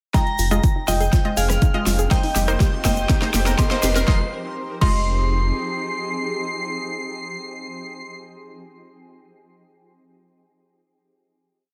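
An up-front, four-on-the-floor electronic kick drives this expansive progressive house piece in F minor at 122 BPM, joined by an overdriven big-room kit with a huge snare, programmed hats, rim clicks and crash, a round, dark off-beat analog bass, a grainy hand-played tube shaker, a faint riser and a reversed backwards swelling texture through a build-up with a drum fill and filter sweeps on the background analog-pluck arpeggio drifting against the bar and the punchy dotted-rhythm unison-pluck stabs, while a crystalline FM bell riff in thirds and sixths, an airy lead doubling it an octave higher and a shimmering granular pad move over Fm7 and Cm7/F until the drums stop at 5.0 seconds and a final Fm7 chord rings from 4.1 to 8.0 seconds.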